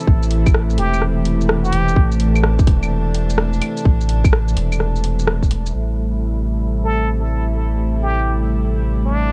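Ghostly and rainy, this future garage fragment, cut from a longer piece, moves at 127 BPM in 4/4 with a 66% swing on the sixteenths, resting on an A minor chord before shifting to C6/A at 5.7 seconds. A distant, floating studio string section holds sustained, bowed chords in a pure sul tasto tone, pumping against the sidechain and softened by a low-pass filter, with a filter sweep running through its final stretch from 5.7 seconds. Beneath it, a deep, round dub sub bass with a triangle and square-wave character sits up front, pulsing with the same sidechain pumping. A tight, layered electronic kick drives the groove alongside a garage kit of claves, bright hi-hats, rim clicks and shaker, its percussion, hats and snare all low-pass filtered, until the drums drop away around 5.7 seconds. Over the top, a brilliant plunger-muted trumpet plays a jazz-style solo with a wah-wah edge, trailed by tape echo, appearing briefly early on and returning from 6.8 seconds, all set in a dark, digital ambience.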